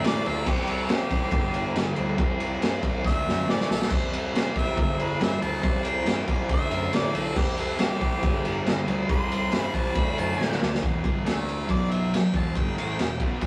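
A rough rehearsal-room recording with tube saturation and light reverb frames this raw, menacing garage rock excerpt. The acoustic drum kit sits up front with a punchy kick, dark cymbals and a pumping small-room sound, and plays fills at 3.0 and 10.4 seconds. A thick, double-tracked fuzz guitar grinds out the riff over a bright, overdriven picked bass in the background, while a harmonica with light vibrato and scooped notes carries the melody through overdrive and tape echo, breaking into a solo that opens on an E minor chord at 10.8 seconds.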